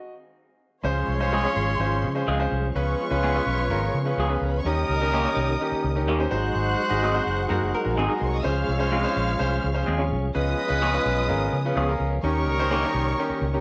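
Soul at 126 BPM in Db major, uplifting and joyful, this excerpt opens with a clear, up-front concert grand piano alone before a round, foam-muted electric bass, a mellow tonewheel organ with key click and fast rotary speaker, and second lines from a lush, woody violin section and a smooth jazz-style horn section (both with slapback echo) join at 0.8 seconds. A slightly broken-up, lo-fi electric guitar adds phased stabs from 1.3 seconds, a hollow-body jazz guitar plays a brief riff in the background around 7.5 seconds, and the piano takes a fill at 11.3 seconds over chords moving from Dbmaj7 through Db7, Eb7 and Ab7. The whole sits in light reverb with small room ambience.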